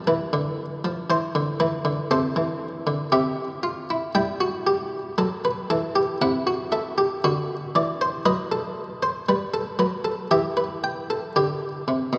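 Serious and driving, this 12.2-second fragment of a baroque-style three-part fugue at a measured 58 BPM in 4/4 features a solo buff-stop harpsichord, its muted, lute-like plucked tone sitting mid-forward and up front within a long, wet church reverb, as the harmony moves from Am/C through F#m7b5/C and B7/F# to settle on Em.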